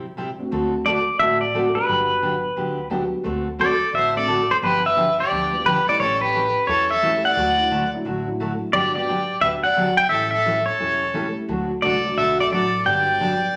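A swung 4/4 groove at 175 BPM drives this playful western swing excerpt in G major, with picked steel-string acoustic guitar and woody, thumpy pizzicato upright bass running from the start, while a dark, mellow upright piano adds vintage accompaniment, dropping out near 9.1 seconds and returning at 11.1. Up front, a bright, clean pedal steel guitar carries the melody with fingerpicks, slide and volume swells, and from 3.6 seconds a close, biting fiddle with light vibrato and an airy bow adds an earthy second line. Harmony moves through colorful changes such as D7, Gmaj7 and A7, all bathed in a lush large studio reverb.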